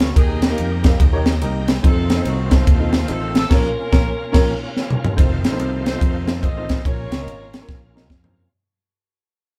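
Uptempo gospel in Bb minor at 144 BPM, with a swung eighth-note feel and a fervent, soulful mood, cut from a longer piece. A clear, tight saxophone section carries the melody with light vibrato, sounding distant and roomy in a jazz style, while a dark, mellow grand piano with short sustain supplies the accompaniment. A bright tonewheel organ sits in the background holding sustained chords, its shouting tone lightly overdriven and colored by a slow rotary speaker and chorus vibrato. Underneath, a round, punchy fingered electric bass anchors the low end, and an up-front acoustic drum kit with bright cymbals, a high-tuned snare and a punchy kick drives the groove through crash, ride and toms. The band hits a shared accent from 3.5 to 5.2 seconds, with a piano fill and a drum fill closing that stretch, before the music moves from Bbm to F7 and begins fading out at 5.2 seconds. The whole group plays live in one room with moderate studio reverb, giving the sound a lively, cohesive presence.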